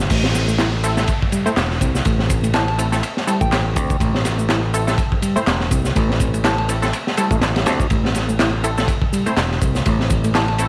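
A gritty, energetic breakbeat cut from a longer piece, moving at 123 BPM in A minor with a 16th-note swing and sitting on an A minor chord throughout its drop. A crunchy, saturated drum kit with a high-tuned snare, tight kick, crash and ride sits up front with a dark, rolled-off top, layered with overdriven electronic shaker and handclaps that sound re-recorded in a large room. A bright, growly fingered electric bass with tube saturation holds the low end from E1 to D2, while a reedy, worn electric piano, slightly out of tune and pulsing with fast tremolo and digital delay, carries the riff from 0.1 seconds. A muted, detuned dub chord stab with a filter pluck and chorus enters at 0.8 seconds, and a soft, pure FM bell drifts in the background from 2.5 seconds with phaser and an old-record tint. An electronic swell and downlifter colour the opening four seconds, and the dry mix is dusted with prominent vinyl crackle.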